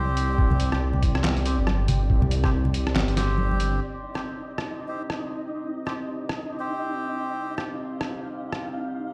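This dark, heavy slice of deep dubstep in C minor opens straight into a drop on a C5 chord, with a moody, wave-folded ambient pad, a reedy, nasal melodica playing stabs through dub echo, and a rumbling, detuned saw bass sitting up front. The groove runs at 140 BPM in a half-time 4/4 feel with a 58% swing on the sixteenths, carried by a gritty, pitched-down sampler-style kit of snare, handclaps, hi-hat and rim click that stays prominent, plus a compressed, thumpy electronic kick. Congas with a thick-skinned, soft-handed acoustic tone sit in the background, and a flickering, granular texture hovers in the upper register with its own reverb. The bass drops out at 3.8 seconds as the second section begins, leaving the pad, melodica, texture and kit, and the melodica stops at 7.6 seconds. The whole mix sounds as if played on a big sound system in a bare room, bathed in a large studio reverb.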